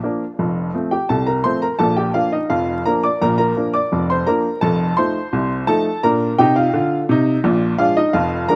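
Playful and cheerful, this short ragtime piano excerpt in Bb major moves at 85 BPM in a straight 2/4, with a clear, woody upright piano playing solo up front from F1 to D6, its slapback echo and light reverb sitting in an outdoor recording flecked with vinyl crackle, tuned to A4 = 436 Hz, as the chords pass from F through Bb and F7 to Bb7 by 7.4 seconds.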